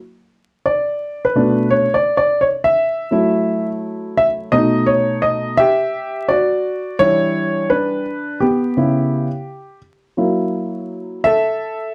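Nocturnal and smoky, this hip hop fragment, cut from a longer piece, sets a solo concert grand piano at 85 BPM in 4/4 with swung 16ths in E dorian, entering at 0.7 s and running to 11.9 s. The mellow, worn piano sits up front with an intimate feel, deep bass, short sustain and audible action noise, moving through Bm7, F#m7 and B7 before shifting at 5.9 s to Em7, C#m7b5 and F#7. A moderate small-room reverb, vinyl crackle and a dark production finish the sound.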